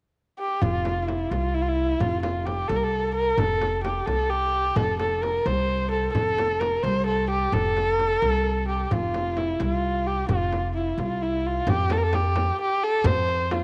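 A Persian modal ensemble piece in F dastgah mahur, this excerpt moves in a stately, passionate 6/8 at 87 beats per minute, counted in dotted quarters. A single bowed kamancheh carries the melody up front from 0.4 seconds, its nasal, boxy tone shaped by expressive vibrato and portamento and trailed by a tape echo. Beneath it, a plucked upright bass with gut strings gives a woody, dark, thumpy foundation, colored by transformer saturation. A close, acoustic frame drum keeps the pulse alongside them. At 11.7 seconds the music turns to a new section, and a deep, very quiet tombak joins in until 13.4 seconds. Light reverb and a small room ambience frame the ensemble.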